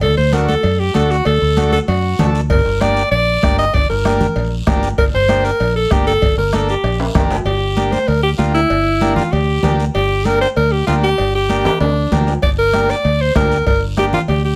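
Cumbia at a fiery, driving 193 BPM in straight 4/4, this short cut from a longer piece opens in G harmonic minor, moving from D to G minor, then shifts to G dorian at 7.5 s, where a drum fill leads into the second section. An edgy alto saxophone carries the melody up front in a pop-style solo with vibrato, while a fingered electric bass, direct, amped and foam-muted, sits equally forward in the low register. A buzzy combo organ with light vibrato fills in the accompaniment with clean tone and a retro character. In the background, ringing metal-shelled cowbell and timbales, high-tuned congas with a thick skin played by soft hands, and a raspy, close and dry guiro keep the groove busy. A soft-beatered bombo enters at 2.5 s, drops out, and returns near the end, all under a light reverb.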